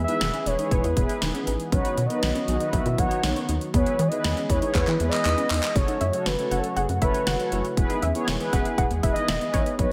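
Synth-pop with a driving, nocturnal mood at 119 BPM in this short excerpt: a horn-like, round synth lead with vibrato and portamento carries the melody over slow-attack analog pad chords, a rubbery, hollow square bass, mellow detuned synth brass and a warbling, lo-fi pluck arpeggio, all set against a punchy, up-front electronic drum kit of kick, fat gated-reverb snare, hi-hat and handclaps, with a drum fill at 4.7 seconds leading into a shift to F# minor at 5.8 seconds, where a second dusty pluck line joins at 6.0 seconds.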